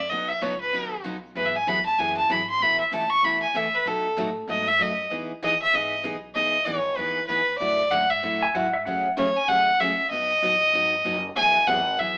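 A bowed fiddle opens this playful western swing excerpt up front, its tone rich, biting and nasal with an earthy body and a smooth top, carrying a solo melody over a swinging 192 BPM groove in E major. Beneath it, a pizzicato upright bass sits woody and warm in the background, while a picked dreadnought acoustic guitar fills in the accompaniment with a bright, full-bodied sound of fresh strings and the occasional finger squeak. The harmony moves through colored chords such as Eadd9, Asus2 and Emaj7, and at 6.4 seconds a new section shifts toward Dadd9/F# and F#madd9 before returning to B and Eadd9. Around 8.4 seconds a clean electric lap steel guitar steps forward briefly with a twangy, compressed slide line and volume swells. The band plays live together in one room with moderate studio reverb, and the excerpt has the character of an AM radio broadcast.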